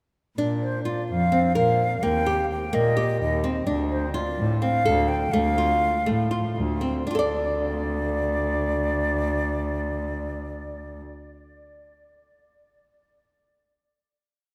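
Restless and hypnotic, this short contemporary chamber piece in 7/8 and D Phrygian moves at 235-256 BPM in eighths, with a fingerpicked flamenco guitar ostinato of arpeggios complete with finger squeak, a dark, veiled, con sordino cello bowing root-and-fifth bass with portamento, and an airy silver flute singing motif-based phrases with vibrato and a soft attack, all up front in a vast cathedral reverb, slowing down from 3.7 seconds before settling on a final chord at 7.1 seconds.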